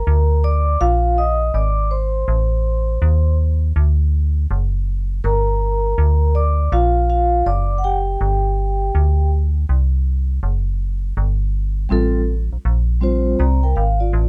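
This hip hop piece, cut from a longer track, has a smoky, cool mood and a swung sixteenth-note feel. A vibraphone played with soft mallets sits up front with a ringing, mellow tone and a slow motor vibrato, bathed in plate reverb, and it carries a solo from the start until 11.2 seconds before the music moves into a new section. Beneath it, a metallic FM bass with a digital edge and a fast attack that quickly decays also sits prominently, holding down the low register throughout. The harmony moves from a rootless Gm7 through Adim and D before settling back on Gm7. The overall production is dark, with a light reverb wrapping the mix.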